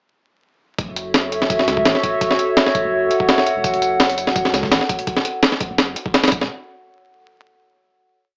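This is a short drum and bass piece with a jungle edge, running at 168 BPM in F# minor with a frenetic yet nostalgic mood, and its drop lasts from 0.8 to 6.5 seconds over an F#m7 chord. A pitched-up, heavily chopped breakbeat kit sits up front with a thumpy kick, medium-tuned snare and hi-hat, sounding compressed and tape-warm. Behind it, a saturated sub bass plays a deep, thick dub-style line, while a dusty soul sampler kit joins in the background from 3.6 to 5.1 seconds with a fat snare, hi-hat and tambourine in a looped, edited breakbeat, high-pass filtered. A warbling, detuned pad holds dark, lo-fi sustained chords up front with a slow attack, long release, chorus and reverb. The overall sound is dry and gritty, like a hardware recording, with vinyl crackle, light digital ambience and a small-speaker character.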